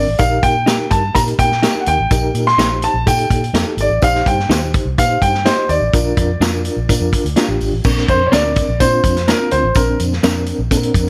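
An intimate, up-front grand piano with audible action noise carries the melody and takes a solo from 7.8 s in this joyful, uptempo 1960s-style soul piece, backed by a reedy electric piano with fast tremolo, a round, foam-muted fingered bass, a vintage drum kit with a punchy kick and dark cymbals, a bright, distant tambourine, and clean, compressed electric guitar stabs in the background, all set in a moderate studio reverb with plate reverb on the pianos and guitar.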